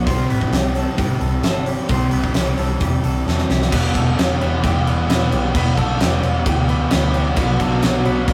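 Dreamy and blissful, this short cut from a longer shoegaze and dream pop rock piece moves in a straight 4/4 through C, Em7 and Bm. A huge arena drum kit sits up front with a punchy kick, fat snare, hi-hat and crash cymbal in a big room sound, and a drum fill at 3.3 seconds leads into the second section at 3.7 seconds. Beneath it, a vintage foam-muted electric bass gives a round, amped low end, while a dark, overdriven electric guitar plays a picked riff. A thick fuzz guitar adds a distorted riff in the background, and a clean, twangy guitar, fingered, drifts through high arpeggios behind them. At 3.7 seconds a very quiet, double-tracked semi-hollow guitar joins with its own overdriven riff, all set in a moderate small-room reverb with the rough, saturated feel of a rehearsal-room recording.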